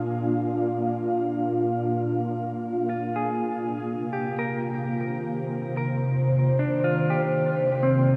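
In a straight 4/4 pulse, this serene, melancholic ambient piece rests on an ethereal, airy pad of detuned, slow-attack sustained chords that move from Bb to Cm7, mellow and up front with ensemble chorus and shimmer reverb, while a dark, clean electric guitar enters at 2.9 seconds with quieter fingered arpeggios carrying vibrato, tape echo and shimmer reverb, the whole recording set in a huge, wet reverb with a cassette tape character.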